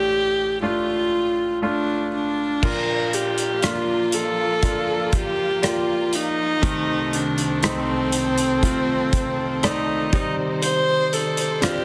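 At a slow, straight 60 BPM in 4/4, this longing, melancholic pop ballad excerpt opens with an intimate, close viola melody, bowed sul tasto with light vibrato, a soft attack and an airy bow, over a bright, polished concert grand piano with deep bass and short sustain. At 2.6 seconds a loose acoustic indie drum kit arrives up front, its tight kick, hi-hat, rim click and crash set in a pumping small room, alongside a focused, smooth-topped studio string section holding sustained bowed chords as the harmony moves from Bb through Adim/C to Cmadd9. Light reverb and studio ambience surround a dense, heavily limited modern master.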